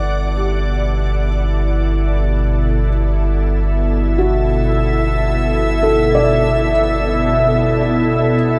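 A pure, organ-like pad sits up front with sustained chords on a Gmaj7, its slow attack softened by ensemble chorus and shimmer reverb as it fades in over the 8.6 seconds of this ambient fragment in G major at 55 BPM in 3/4. A felt-muted upright piano, mellow and vintage in the background, traces gentle arpeggios through diffuse ambient delay and shimmer as it also fades in. A round, dark analog bass holds a deep G, all set in a huge, wet reverb space that gives the piece a weightless, warm calm.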